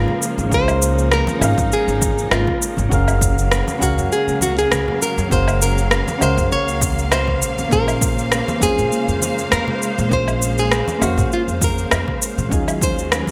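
A bright 1980s-style digital production with moderate plate reverb frames this relaxed, sunny sunset chillout excerpt at 100 BPM in 4/4, its lightly swung feel moving through Db6, Gbmaj9, Bbm9 and Ebm11. A fingerpicked classical nylon-string guitar carries the melody through digital delay, over soft, round, warbling electric-piano-like synth keys treated with chorus and delay, and lush, bowed symphonic strings holding sustained chords with expressive vibrato. Underneath, a woody pizzicato upright bass anchors the groove, ringing congas played with soft hands sit in the background, an up-front overdriven layer of electronic shaker, woodblock and rim click with gated reverb enters at 0.2 seconds, and a punchy overdriven electronic kick drum joins at 0.5 seconds.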